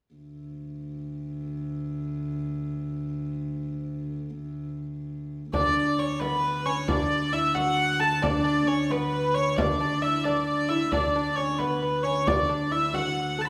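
Recorded live by a band in one room, this festive, rustic medieval dance in 6/8 sits in a wet, large studio reverb and is cut from a longer piece. A warm, intimate bowed viola da gamba holds a low drone alone from the start. At 5.5 seconds a clear, nasal hurdy-gurdy takes the melody up front with tape echo, joined by a delicate fingerpicked lute on gut strings playing a second line and a deep frame drum struck with hard hands until 13.1 seconds.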